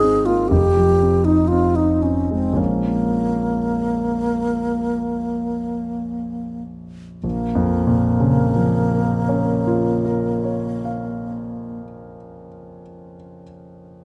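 Rubato shapes this slow 4/4 passage, which moves at roughly 49-62 BPM and keeps slowing down through its first 7.2 seconds. It is a wistful, mysterious impressionist duet in B-flat minor, cut from a longer classical piece. A wooden-headed alto flute carries the melody in its low register, airy and mellow with vibrato, soft attacks and lifted highs. A dark grand piano accompanies with a smooth, intimate, vintage character, its action noise audible beneath the harmony as it moves from Fm7 to Bbm9 and settles on Bbm at 7.2 seconds. Both instruments sit up front, captured by close, detailed microphones in a moderate recital hall reverb. The flute falls silent at 11.8 seconds, and the piano closes the passage alone.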